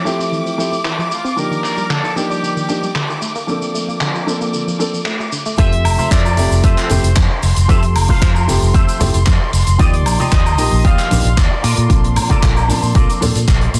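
A dense, heavily limited modern mix with light reverb and studio ambience frames this groovy, feel-good nu-disco excerpt in F major at 114 BPM, opening on an intimate, boxy grand piano with audible action noise, dark lush strings held in the background, a round, detuned analog pluck arpeggio and a dry, rolled-off 70s drum kit with handclaps, hi-hat, shaker and woodblock, all breathing with sidechain pumping except the drums, while a clear, tight vintage trumpet section carries the melody from 1.1 s. At the drop at 5.6 s, a punchy, up-front electronic kick, a bright fingered bass with an envelope filter and a twangy, clean electric guitar riff with envelope filter and ensemble chorus arrive just after the pluck falls away, with hard-handed congas joining in the background from 6.0 s. The chords move through Fmaj7, Ebmaj9 and Bbmaj7, and analog delay trails the piano, pluck, trumpets and guitar.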